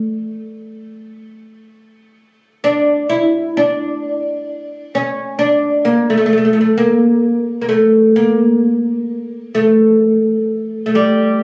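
A solo oud sits up front, its woody, double-strung tone plucked with a plectrum on the fretless neck through a stately Turkish passage in makam hicaz, moving in 10/8. The piece turns to a new section at 3.5 seconds and keeps the same warm, dignified character until the fragment, cut from a longer performance, ends at 11.4 seconds. The sound has the quality of a phone recording in a recital hall, with a moderate reverb tail that lingers around each note.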